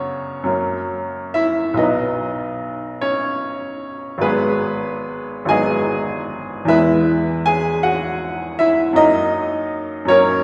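A bright, woody upright piano carries this romantic nocturne alone, its polished tone sitting up front and present from the first note to 10.4 s. The mood is nostalgic and serene, unfolding in B major in 12/8 at roughly 45-54 BPM in dotted quarters, with a free, rubato feel. The harmony moves from F#sus4 to F# and B, then through G#m7 and E before returning to F# at 9.0 s, and the piano's range spans G#1 to G#5. The instrument is tuned slightly low, at A4 = 438 Hz. A wet scoring-stage reverb with a 1.6-second decay places it in the resonant space of a church or concert hall, in this short passage cut from a longer piece.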